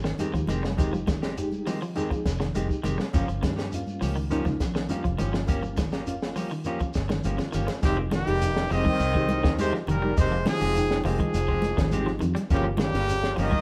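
This excerpt of hypnotic, funky afrobeat in straight 4/4 opens with the rhythm section together. A compact cocktail drum kit with a punchy kick and high-tuned snare sits up front, under a round, foam-muted fingered bass and two clean, picked electric guitars: one plays background arpeggios while a hollow-body semi-hollow adds stabs. A grainy, vintage shekere and faint, thin-skinned congas fill in the percussion, and a reedy electric piano with fast tremolo sits in the background through its built-in speakers. The harmony moves between Fm9 and Gm7b5, and a drum fill at 7.1 seconds leads into the second section at 7.8 seconds, where a bright, close-miked trumpet takes the melody up front. Beneath it, a raspy, growling trombone with vibrato sits in the background, and a tight, brilliant trombone section adds a very quiet second line, with the band heard live in one room with moderate reverb.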